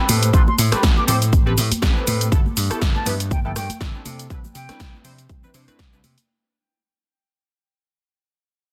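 Nostalgic and funky, this short cut from a longer filtered disco house track grooves at 121 BPM in 4/4 with a light 16th-note swing, moving through Am9, G69 and Cmaj9. An up-front, layered electronic kick sits beside a punchy, overdriven analog drum machine of hi-hat, snare, rim click and cabasa, which pumps alongside an amped vintage slap bass, while a warbling, detuned sawtooth polysynth comps with chorus, phaser and filter sweep, and egg shaker and congas sit close and dry in the background. A pure, straight-toned concert flute enters at 0.3 seconds with dub echo and drops out at 4.9 seconds, all within a dense, heavily limited mix that carries little reverb.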